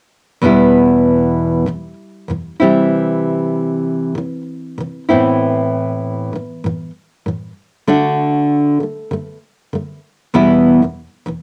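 A fingerpicked nylon-string guitar plays alone and up front, its bright, full-bodied tone colored by a cassette-tape grain and finger squeak. This reflective, tender pop excerpt moves at 97 BPM in E minor with a light sixteenth-note swing, cycling through Em, C, Amadd9 and D before returning to Em at 10.3 seconds. A moderate studio reverb and the homespun cassette recording give it an intimate, close feel.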